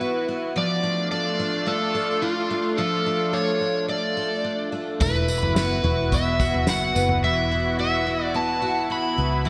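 Blissful and dreamy, this dream pop excerpt sets an overdriven slide guitar melody with delay up front over a shimmering, octave-doubled twelve-string acoustic guitar picking arpeggios and a thick, detuned sawtooth pad holding chords with chorus, before a round, punchy muted bass and a loose indie drum kit with fat snare and tambourine arrive at 5.0 seconds and a faint, bell-like glockenspiel rings in the background from 5.4 seconds, the mix bathed in lush hall reverb and bright 1980s-style digital production.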